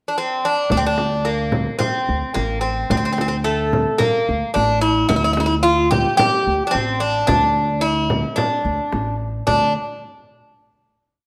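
A straight four-beat pulse arrives at 0.7 seconds from a small frame drum struck with soft hands in a low and high stroke pattern, entering together with a pizzicato upright bass playing a simple, woody, thumpy root-and-fifth line. Before them, a Greek bouzouki opens the pickup bar alone at 0.1 seconds and then carries a melancholic, soulful modal melody with ornaments, its bright, metallic double strings, some doubled at the octave, sitting up front in this short Turkish makam ensemble piece. A recital hall's reverb gives the whole a soft, spacious glow, and the final note hangs in that space until 11.3 seconds.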